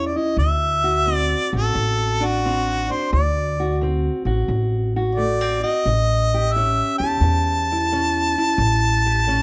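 Soulful and swaggering, this short acoustic country blues passage moves at 88 BPM in 4/4 with a swung eighth-note feel, shifting from D7 to A7 at 5.9 seconds. A bright, up-front harmonica carries the jazz-style solo melody with vibrato, soft attacks and scooped notes, while a dark, boxy fingerpicked parlour steel-string guitar accompanies beneath it. A woody pizzicato upright bass sits up front in the low register, and the whole passage is set in light reverb.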